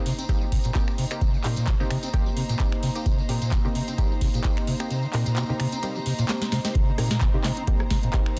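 A dense, heavily limited mix with small-room ambience carries this hypnotic, gritty acid house excerpt at 130 BPM in C minor, swung on the sixteenths over a Cm7 chord. A squelchy, resonant sawtooth acid bass with tube saturation and a filter sweep drives the riff over an up-front deep kick, a booming analog drum machine with crisp snare, metallic hats, snaps, claps and rim clicks, and a jingly vintage tambourine. Meanwhile a warbly lo-fi pad pumps in the background, close, intimate dark bowed strings pump alongside it, and a muted, detuned dub chord stab with delay sits beside them. The kick drops out at 4.9 seconds, a drum fill follows, and the drop lands at 6.8 seconds.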